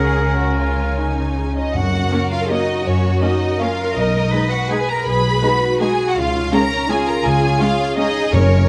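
This short cut from a longer orchestral ballroom waltz in F# major opens with strings, harp and a brief oboe line together, the oboe's smooth-topped, lightly trembling tone dropping out at 1.4 seconds. The mood is festive and sweeping, moving in 3/4 at 146-178 BPM with a rubato feel. A rich, focused upper violin section carries the melody with vibrato, while a lush, expressive second violin section plays a more distant second line and the violas supply an even accompaniment. Cellos and double basses anchor the bass with bowed ensemble tone, and a mellow concert harp rings out arpeggios in the background. Timpani struck with hard mallets add dry, articulate accents from 1.7 seconds and again near the end at 8.3 seconds, and the recording pairs close, detailed microphones with light reverb.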